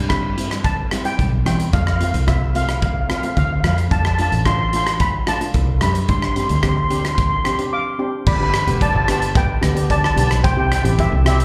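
A shimmering lead steel pan with slapback echo and delay carries the melody over a punchy, foam-muted fingered electric bass from the start, joined at 0.1 s by a dark, smooth double-seconds steel pan accompaniment and an up-front big rock drum kit with bright crash, hi-hat, kick drum and rim click, in a carefree, bouncy calypso at 110 BPM cut from a longer piece and heard as a live gig through a club PA with small room ambience, moving through Cmaj7, F, Dm and G7sus4 to a break at 7.7 s before settling on G and C.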